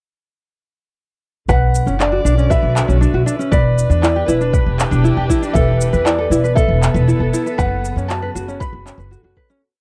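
A soft, overdriven electronic kick and a clicking found-sound beat of cabasa and handclaps, both re-recorded in a small room, set a straight 4/4 groove from 1.5 seconds in this short, wistful and delicate folktronica piece. Up front, a woody, thumpy pizzicato upright bass plays a dotted-rhythm line, while a light, fingerpicked tenor ukulele runs an eight-step arpeggiated sequence through tape echo. A felt-muted upright piano carries the motif-based melody with a mellow, intimate tone, its action noise audible and its song-like phrases also touched by tape echo. Behind them, a distant muted string quartet, one player per line, holds dark, veiled chords that shift slowly from Bmadd9 through Em7 and Asus2/E to F#sus4. At 5.5 seconds a vibraphone with soft mallets joins in the background, ringing a metallic 16-step sequence with motor vibrato and tape echo, and the dry, close 1970s-style recording fades out from 6.9 seconds.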